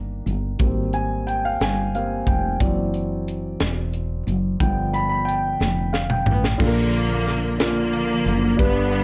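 In a slow, straight 6/8 at 60 BPM, this soulful, solemn gospel excerpt opens on a dark, mellow concert grand piano taking a solo turn over a woody, growly fretless bass with lush chorus, as a crisp fusion drum kit with a punchy kick and high-tuned snare joins at 0.3 seconds and plays a fill at 5.6 seconds before a rich, bowed string section carries the vibrato-laden melody from 6.3 seconds, all set in light reverb and a dark production.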